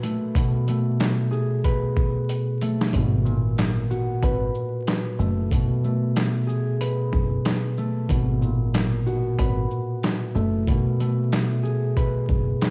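Moody and gritty, this boom-bap hip-hop excerpt at 93 BPM in G# phrygian swings its 16ths as a ringing, thumb-plucked concert harp sits up front beside a compressed, pitched-down sampler-style drum kit of thumpy kick, medium-tuned snare, hi-hat, shaker and handclaps, both parts tinged with cassette tape, while a dark, round, foam-muted dub electric bass enters at 2.9 s after a brief drum fill, the whole recording carrying vinyl crackle and a home-cassette character.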